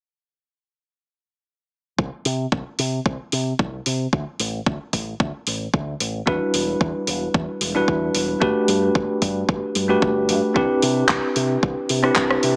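A bright, bell-like tine electric piano with dub echo sits up front from 6.3 seconds over Em7, Gmaj7 and Cmaj7 in this sunny, feel-good nu-disco piece at 112 BPM with a light swing, joining a punchy, tape-warm electronic kick and a house kit of handclaps, hi-hat and rim click, both re-recorded in a large room and starting near 2.0 seconds, alongside a fingered electric bass through an envelope filter with sidechain pumping, in a mix with light reverb and a small-speaker sound.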